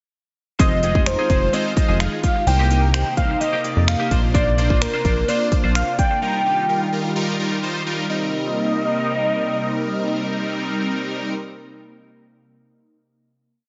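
A syncopated house beat at 128 BPM, with a punchy kick, crisp hi-hats and finger snaps, drives this bittersweet, confident dance-pop piece in C minor, where a glossy chorused synth bass, a fat detuned polysynth pumping in eighth-note chords, a choppy, twangy twelve-string electric guitar and a breathy pad back a velvety, warbling synth lead through a big arena-like hall sound, until the drums, bass and guitar fall away by 6.2 s and the lead, polysynth and pad hold a final Cm7 from 8.1 s.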